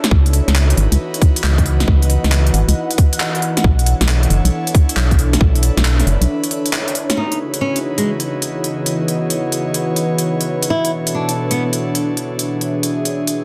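A dense, heavily limited modern mix with light reverb opens this soulful, skippy two-step garage excerpt, moving at 136 BPM in 4/4 with a 66% swing on the sixteenths. Two pads hold the harmony throughout, alternating between C#m11 and Bm11: an airy, breathy pad with a soft noise layer and chorus, and a deep, moody ambient pad with detuned sawtooth unison, a sub octave and its own built-in reverb, both pumping against the sidechain. The garage drum kit brings a cracking snare with soft clipping, crisp hats and handclaps, tape-toned and re-recorded in a large room, while a tight, up-front electronic kick drives the first half alongside a hollow, percussive, organ-like FM bass with a fast attack and dark decay. The kick falls away at 5.5 seconds and the bass at 6.3, opening a break marked by a band accent at 6.7 seconds, before the second section begins. At 7.2 seconds an up-front, fingerpicked flamenco guitar enters with a dub echo, carrying the melody over the pads and drums until 11.6 seconds.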